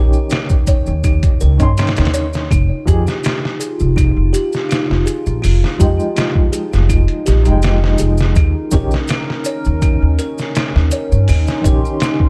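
This smoky, melancholic trip hop fragment opens with a mellow, woody upright piano under tremolo, a delicate, tinkling music box playing arpeggios through tape echo, a thumpy pizzicato upright bass up front and quiet saturated maracas, before a gritty, pitched-down sampler-style drum kit with a thumpy kick enters at 0.3 seconds and a deep, detuned analog pad with chorus, phaser and 12-bit grit arrives at 3.2 seconds, all in a dark small-room sound.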